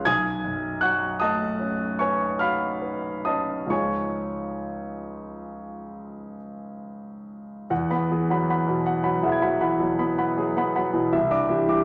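A warm concert grand piano, up front with deep bass, open tone and long sustain, plays this hazy, serene impressionist classical solo in a slow, rubato 9/8 at about 42-55 BPM in dotted quarters, tuned to A4 = 442 Hz and ranging from Cb2 to Ab6, its chords drifting from Cb9 through Dbadd9 to Eadd9, where a second section begins at 7.7 seconds, and on to Cadd9, all set in a wet recital hall reverb in this short passage cut from a longer piece.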